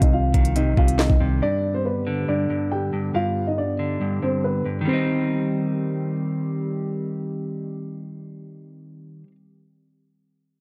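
Drill hip hop at 139 BPM in a half-time 4/4 feel, this short cut from a longer piece sits in C harmonic minor and carries a tense, menacing mood. A boxy, dark concert grand piano carries the melody up front until 6.1 seconds, beside a clean, fingered electric guitar accompaniment that runs to 9.4 seconds, both softened by a low-pass filter. Beneath them, a warbling, detuned tape-like pad holds sustained chords with chorus and its own reverb, giving a nostalgic, lo-fi haze in the background. The drill kit hits hard for only the opening 1.2 seconds, with a knocking kick, sharp snare, crisp hats and handclaps, while a deep, sine-toned 808 bass rings out briefly under it. The harmony moves from Cm to G and returns to Cm at 4.9 seconds, where a second section begins, all within a dark production with light reverb.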